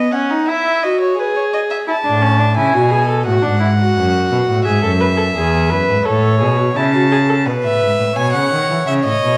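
A wet recital-hall reverb surrounds this period-style string quartet excerpt, an elegant, lively baroque-style fugue in A major at 86 BPM in a straight 4/4, with every player on gut strings. An airy-bowed violin carries the second line throughout, a smooth-topped viola plays accompaniment until 7.4 s, and a reedy cello with light vibrato adds a distant bass from 2.1 s. After the harmony has cycled through E, A and D, a second, rich-toned violin takes the melody at 7.6 s over an E5 chord that resolves to A.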